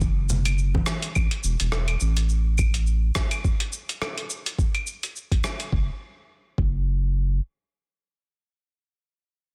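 A round, deep analog bass opens this relaxed sunset chillout excerpt together with a gritty, sampler-style soul drum kit and a thumpy electronic kick, settling into an easy 4/4 at 105 BPM with a lightly swung sixteenth-note feel. The bass sits low, between E1 and A1, with a dark, nasal tone blending sine and triangle shades, a fast attack and long sustain, and it is placed up front in the mix. The drum kit brings cabasa, claves, hi-hat and rim click with a dusty, tape-warm character, its snare softly clipped, and both the kit and the compressed kick sound as if re-recorded in a large room while still sitting close and forward. Low-tuned, thick-skinned congas played with soft hands appear only briefly near the start, with an acoustic, live-room feel. The kit drops out at 5.7 seconds and the kick at 6.8 seconds, leaving the bass alone until it stops at 7.4 seconds. The overall sound is dry, dense and heavily limited, in the manner of a modern master.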